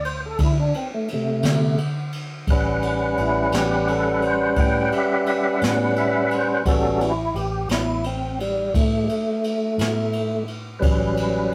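Swaggering and gritty, this slow blues in 12/8 moves at 58 BPM in A mixolydian, with a tonewheel organ up front carrying the solo through the whole 11.5-second fragment of a longer piece. The organ sounds fat and lightly overdriven, with key click, chorus vibrato and a slow rotary speaker as it sustains chords from D7(no3) into A13 at 2.5 seconds. Beneath it a dark, round, foam-muted electric bass anchors the low end, while an up-front brush kit adds a boomy kick, high-tuned snare and ride cymbal, all in a rough rehearsal-room sound with moderate reverb.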